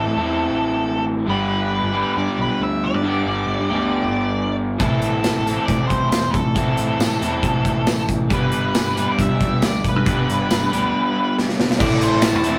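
A crunchy, double-tracked overdriven guitar opens up front with a bright picked riff, joined from the start by a fuzzed lead guitar carrying the melody and a picked electric bass underneath, as the chords move between A minor and G. This short cut from a longer classic rock piece has a driving, swaggering straight feel in 4/4. At 4.8 seconds a big acoustic rock kit arrives with a boomy kick, medium-tuned snare, hi-hat, crash and tambourine, sitting prominently in the mix, and a drum fill leads back to A minor at 11.8 seconds. There, a woody upright piano adds a faint accompaniment while a dry metallic cowbell is barely audible. The whole thing has the rough character of a rehearsal-room recording in a modest small room.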